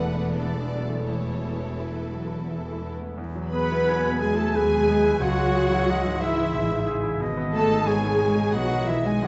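Cinematic, emotional film score for orchestra in a rubato 3/4 at roughly 84-91 BPM, uplifting and hopeful, settling into E major from 3.2 s as the chords move through Eadd9, C#m and G#m. A very quiet, distant violin section carries the melody with vibrato and portamento over a rich second violin line, a dark, expressive viola section, a bright, polished concert grand piano and a ringing, fingerpicked harp, while cellos and double basses anchor the bass. At 3.5 s a hollow flute and a mellow French horn section enter, followed by a solo oboe at 3.9 s, all set in a moderate scoring-stage reverb with a dark, warm production.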